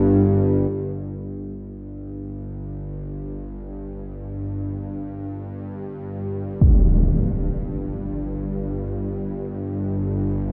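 A low, bowed-like drone opens this desolate, ominous dark ambient excerpt, floating in free time and fading in from 0.7 seconds, its string-like sawtooth tone tense and detuned, with a noise layer, vibrato and long sustained notes sitting up front in its own reverb. At 6.6 seconds a huge, bright impact strikes through a low-pass filter, briefly louder than the drone. A lush hall reverb soaks the whole dreamy mix, leaving a cavernous, unsettled space around the sound.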